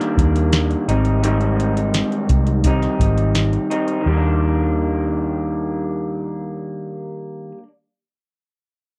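Indie bedroom pop at 85 BPM in Eb major, sunny and hazy, where a slightly broken-up, lo-fi electric guitar through a small old amp shimmers with lush chorus and warbly pitch drift over Ebmaj7 and Abmaj7 chords, a dark, round, foam-muted fingered bass gives punch, and a tape-warm analog rhythm box with a deep kick, crisp snare and metallic hats plays until 4.0 seconds, set in a dry, close 1970s-style studio sound.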